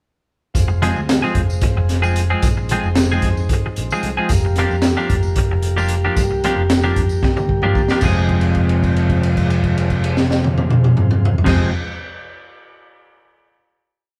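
A bright, twangy twelve-string electric guitar leads this short, mysterious psychedelic rock piece, playing a compressed riff of short syncopated chords up front. Beneath it, a crunchy breakbeat drum kit drives a 7/8 groove at 224 BPM, its saturated, gritty sound marked by a punchy kick, a high-tuned snare and dark cymbals with a rolled-off top. A picked electric bass adds a punchy, amped syncopated riff, while a tonewheel organ holds a smooth sustained pad in the background through a slow rotary speaker, and a jingly, band-limited tambourine keeps an evenly spread pattern. The harmony in F dorian moves from Fm to Gm7/F and back. A drum fill from 7.2 s leads into a final Fm chord at 8.0 s that is held to the close, heard as a band playing live in a moderate stone room.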